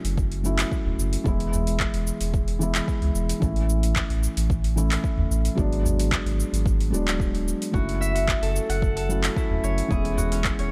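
Organic downtempo with a meditative, mystical air: over the chords F#m7, E, A and G#m7b5, a felt-muted upright piano, dark and intimate with audible action noise, pumps through digital delay above a round sine sub bass, an overdriven deep house kit of cabasa, handclaps and metallic hi-hats, and an electronic kick drum. A deep udu sounds in the background, and a ringing, fingerpicked concert harp enters with arpeggios at 7.7 seconds as the harmony returns to F#m7 and then E.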